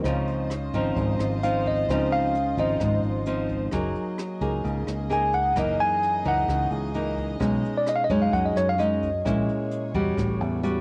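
Romantic and sophisticated, this bossa nova fragment sets a clean, tremolo-laced tine electric piano melody, entering at 1.4 seconds with plate reverb and cassette grit, over up-front fingerpicked nylon-string guitar with audible finger squeak, a punchy fingered electric bass, brushed drums with a boomy kick, hi-hat and rim clicks in a small room, reedy gut-string chamber strings holding bowed chords, and a very quiet baby grand piano that drops out at 3.7 seconds as the harmony moves through rich jazz chords, the whole take carrying the homespun character of a cassette home recording.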